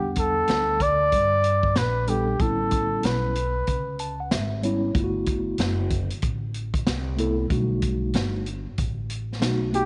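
A breathy, close-miked flugelhorn carries a scooped, soft-attacked jazz melody up front in this cool, warm jazz-hop excerpt at 94 BPM with a swung 16th-note feel, falling away at 4.3 seconds while a mellow tine electric piano, clean through its built-in speakers, plays a fill from 3.7 seconds over Em7, A9, Gmaj13 and B7b13 chords, alongside a woody, dark pizzicato upright bass and a natural vintage drum kit with a punchy kick and rolled-off top that enters at 0.2 seconds, all set in a small room with light reverb.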